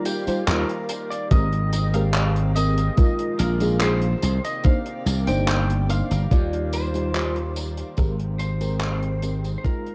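A woozy, melancholic vaporwave piece opens with a lightly driven, picked lead guitar melody carrying sampler grit and tape echo, over a soft, warbling FM electric piano with tremolo and lush chorus and a thick, detuned unison pad sustaining jazzy major-ninth and minor-ninth chords in the background. A distant, roomy soul kit of handclaps, hi-hat and tambourine joins with a growly, punchy slap bass up front, and a thumpy, sampler-style electronic kick enters at 1.3 seconds. The dark, cassette-tinged production sits in a small room, and the music fades out from 5.8 seconds.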